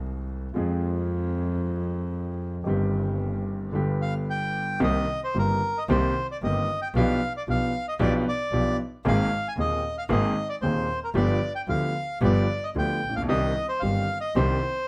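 A melancholic, passionate tango in C minor, this cut from a longer piece moves at 113 BPM in 4/4, though the feel is rubato and loose. A warm, smooth grand piano with a vintage character sits up front as accompaniment, sounding from the start and reaching down to Eb1 in its low register. Beneath it, a single bowed double bass carries the bass line with a clear, biting, earthy tone and light vibrato. The bandoneon enters at 4.0 seconds with the melody, its reedy, dark and airy voice placed up front in a high range. The harmony opens on Ab/C and Fm before settling into Cm7, G7/B and Abadd9, finally arriving on Cmadd9 at 13.3 seconds. A moderate studio reverb gives the trio a modest sense of space.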